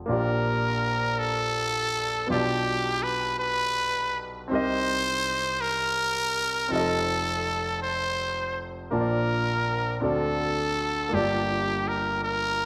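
Uplifting and soulful, this short gospel excerpt in Bb major moves at a slow 54 BPM in a straight 6/8, with a warm concert grand piano laying down deep-bass chords from the start under a progression that runs from Bb6 through G7/B, Cm7 and F7 to Bbmaj7 before passing through D7 to Gm7. Entering at 0.1 seconds, a growling trumpet carries the solo melody up front, close-miked and raspy with brilliant vibrato, gritty scooped notes and a slapback echo. Both parts sit in a moderate scoring-stage reverb that lends the performance a spacious, churchy glow.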